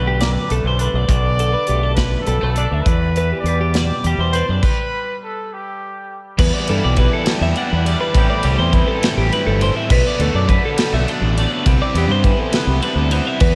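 Math rock and midwest emo in a straight 6/8 at 68 BPM, this intricate, wistful fragment opens with a distant, roomy trumpet singing the melody with light vibrato and scooped notes over chiming twelve-string arpeggios, a twangy chorused guitar in the background, a growling overdriven fingered bass up front and a punchy, mid-forward studio kit. A stop at 4.6 seconds leaves a pause before a crunchy, double-tracked overdriven guitar riff enters at 6.4 seconds, carrying the second section through Em11, Am9, Bm7 and Cmaj9. A lush hall reverb gives the whole band a big arena sound.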